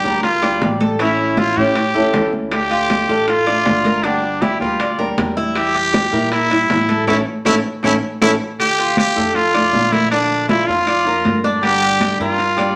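A growling trumpet leads this danceable Cuban son and guajira passage, its raspy, gritty tone close-miked and up front as it carries the melody over a harmonic-minor progression. Beneath it, a fingerpicked nylon-string guitar supplies small, warm accompaniment while a picked Cuban tres spins arpeggios with metallic double strings, some doubled at the octave. An upright bass played pizzicato adds a thumpy, woody pulse, and soft-handed congas with a thick, high-tuned skin sit at the heart of the percussion. Very quiet round bongos, ringing metal-shell timbales and dry, close claves fill out the groove, with the bongos dropping out at 8.3 seconds. A band accent and a drum fill close the first phrase before it restarts at 8.6 seconds, all set in a wet studio reverb in this cut from a longer piece.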